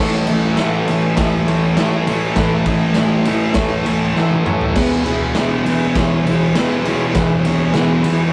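A straight 4/4 beat at 100 BPM drives this raw, swaggering garage rock piece, cut from a longer recording and tuned slightly high at A4 = 441 Hz. Up front, a thick fuzz guitar plays a low, dark riff between E2 and A3. It is picked, distorted and double-tracked, and shifts from A to E at 4.8 seconds. The garage drum kit enters at 0.3 seconds, acoustic and gritty, with a punchy kick, a medium-tuned snare, crash, ride and toms, all in a bright stone room that pumps. A drum fill runs from 4.2 seconds into that chord change. In the background, a vintage combo organ holds mellow, clean sustained chords from E4 to E5, bathed in spring reverb, and the whole has a rough rehearsal-room sound with tube saturation and moderate studio reverb.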